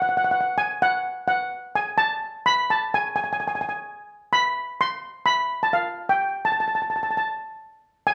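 A lone steel pan, struck with soft rubber sticks, carries this sunny, carefree calypso fragment from its opening, its mellow, shimmering tone sitting up front and ranging from F5 to C6. The tempo moves at 128 BPM in 4/4 with a light swing on the sixteenths, and the tuning sits slightly low at A4 = 438 Hz. A wet, large studio reverb and the feel of a band playing live in one room surround the dark, smooth pan through the full 8.1 seconds.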